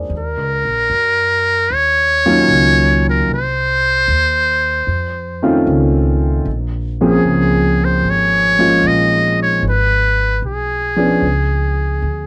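A baby grand piano with audible action noise and long sustain opens alongside a woody pizzicato upright bass in this tender, late-night jazz ballad at 76 BPM with a swung feel, before a buzzy, thin trumpet in a metal mute enters at 0.2 s, close-miked and up front with light vibrato and scooped notes, both horn and piano carrying a cassette-tape color in a snug booth ambience until the piano drops out at 11.2 s, leaving bass and trumpet to close this home-recorded excerpt over chords moving from Ebm9 to Db5.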